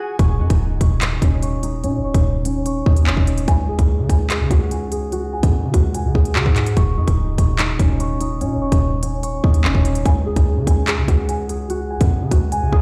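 A fingerpicked concert harp opens this menacing, tense drill excerpt, its ringing acoustic arpeggios softened by a low-pass filter and trailed by delay. At 0.2 seconds a produced electronic drum kit with a hard-clipped kick, crisp hi-hats and handclaps hits up front, joined by a punchy, heavy sine 808-style bass with a noise layer, fast attack and decaying tail, all moving in a half-time feel at 146 BPM through Ebm7 and Dbsus4 in Eb minor. The whole track sounds as if played on a big sound system in a bare room, with large studio reverb.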